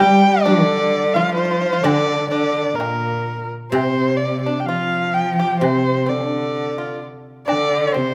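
The dark, woody erhu carries the melody up front with vibrato, soft attacks and portamento, alongside a rich, expressive bowed cello in a second line in this tender, graceful passage of Chinese traditional chamber music at a rubato 64 BPM in 2/4. Beneath them, a dry, percussive pipa sits in the background, while a silvery, ringing guzheng provides accompaniment, both plucked with fingerpicks. A very quiet woodblock adds dark percussion until 7.7 seconds, and the whole short excerpt sits in a moderate recital hall reverb.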